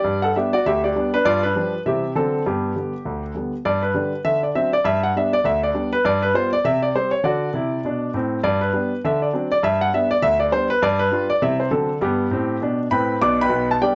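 A solo concert grand piano opens this swinging, exuberant stride jazz excerpt, sitting up front in an intimate, natural sound with deep bass and audible action noise under light reverb. Over a lively swung 4/4, it plays through a short strain twice, the second starting at 3.7 seconds, cycling through G, G7, C and D7 back home to G. The piano plays on until 13.9 seconds, settling on a G/B chord at 13.2 seconds.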